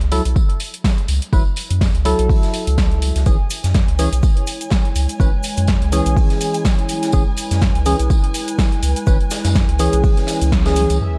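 Warm, lightly reverberant and hypnotic, this 124 BPM deep house excerpt with a swung 16th feel rides an overdriven, up-front electronic kick and a round, nasal analog bass pumping under F#m7 and then C#m/F#, while a punchy overdriven drum kit, a distant acoustic arena kit with tambourine, hollow chorused organ stabs with delay, a grainy cabasa and a smooth, dark violin section entering at 3.3 seconds, and a warbling lo-fi tape pad arriving at 4.2 seconds lead to a band accent at 10.5 seconds and a sub drop impact at 11.0 seconds.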